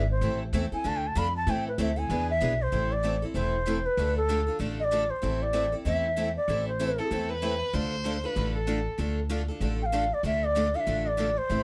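An airy bamboo bansuri opens this fiery, virtuosic slice of acoustic string swing, its tongued, vibrato-laden melody sitting close and up front at a brisk 192 BPM with a swung eighth-note feel. Beneath it, two picked steel-string acoustic guitars supply the accompaniment throughout, one bright with finger squeak and the other boxy with a parlour character, both ringing with fresh strings. A woody, thumpy upright bass on gut strings anchors the low end, played pizzicato with a dark, prominent tone. The harmony moves through A minor, D minor and E7 in a minor-key swing, and the bansuri carries on into the second section before pausing at 7.1 seconds. A single bowed violin steps forward from 7.0 to 9.1 seconds with a smooth, even second line and vibrato, after which the bansuri returns at 9.8 seconds to close out the passage under light reverb.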